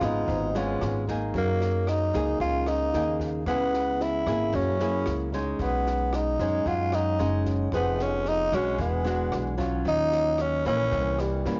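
Bossa nova with a wistful, melancholic mood, heard in an 11.6-second cut from a longer piece, where a raspy, growling tenor saxophone carries the melody up front with breathy, scooped notes over fingerpicked nylon-string guitar with a cassette-tape tint and woody pizzicato upright bass touched by transformer saturation. A compact cocktail drum kit sits in the background with a punchy kick, rim clicks and a high-tuned snare, while chords drift through lush extended harmonies from Db7 to a closing C7b9. The home cassette recording sounds muffled at the top end, set in light studio reverb.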